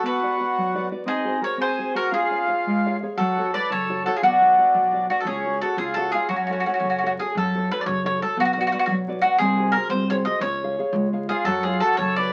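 Italian folk serenade in 6/8 with a rubato feel, romantic and passionate, heard as a short cut from a longer piece. A round, double-stringed mandolin carries the picked melody up front throughout, while a reedy, dark accordion sits close beside it with a smooth second line that drops out at 7.1 seconds and returns at 11.3 seconds. Underneath, a thumb-plucked classical nylon-string guitar supplies the accompaniment and slips in a brief fill at 2.6 seconds, just before a woody pizzicato upright bass enters at 3.2 seconds. The minor-key harmony circles through a progression that resolves repeatedly to F#m, and the phrase is stated twice in succession. The sound carries moderate studio reverb and the crackle of a very old 78 rpm record, lending the performance an aged patina.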